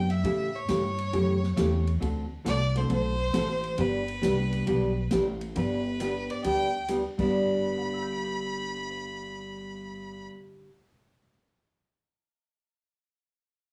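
Swung eighths at 135 BPM in 4/4 drive this down-home western swing piece in G major, moving from A7 to D7 to G. A biting, distant bowed fiddle carries the melody over a thumpy pizzicato upright bass, a dark, clean hollow-body jazz guitar sitting up front, and an intimate, boxy upright piano with audible action noise and long sustain. Airy big-band drums with a punchy kick, hi-hat, snare, ride and crash cymbal swing until 7.3 seconds under light reverb. The fiddle, bass and guitar carry on past 10 seconds, and once the guitar drops out the piano rings on alone to 11.3 seconds.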